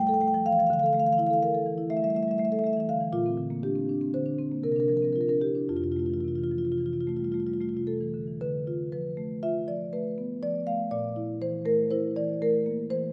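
Set in a 5/4 that moves between about 108 and 125 BPM, the rhythm breathes with a rubato feel, giving this short cut from a longer contemporary classical piece a flowing, playful character. A solo marimba played with soft mallets carries everything, sitting up front and ranging from F2 up to G5, its rosewood bars sounding woody and round with a mellow edge. The opening passage rests in F major, drifting through colours such as Bbmaj7, Dmadd9 and C9sus4 before settling on Fmaj7. At 8.4 seconds the music turns to D minor, moving from Dm6 to a Bbmaj7#11 at 10.9 seconds. A moderate scoring-stage reverb with a 2.1-second decay surrounds the instrument, and the excerpt ends at 13.1 seconds.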